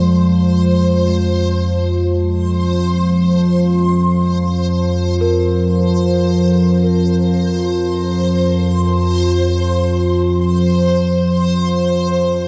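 A nasal, evolving analog drone sits up front, its sawtooth and pulse-wave tones held on a chorused low F across the whole 12.5 seconds of this cavernous, unsettling dark ambient fragment in free time and F minor. Above it a reversed, granular texture on a high C swells with a bright, detuned shimmer. In the background a soft gamelan-type bronze metallophone, struck with padded mallets, rings out arpeggios through analog delay until 11.7 seconds, all over a single Fmadd9 chord in a dreamy mix soaked in lush hall reverb.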